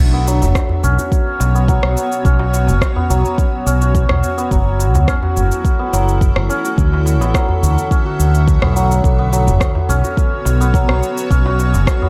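A mellow fretless electric bass stands out, dark and round, sitting up front with a lush chorus and sidechain pumping as it holds the low end from 0.0 to 11.8 seconds in this meditative organic downtempo piece at 106 BPM in B minor. Above it, a hammered santur plays shimmering, ringing arpeggios through a low-pass filter and tape echo, with a filter sweep running across its whole span. A cloudy, evolving granular pad holds blurred, full-bodied chords with a slow attack and long release, pumping under its own built-in reverb. From 0.3 seconds, an electronic shaker and rim click join a crisp, deep metal-shell darbuka set back in the mix, while a deep, up-front electronic kick drum enters at 0.6 seconds. The harmony moves from Bsus2 through F#m7 and D6 before returning to Bsus2, and at 9.0 seconds a bronze singing bowl rings softly in the background with a slow beating tone, all within a light, small-room ambience in this section cut from a longer piece.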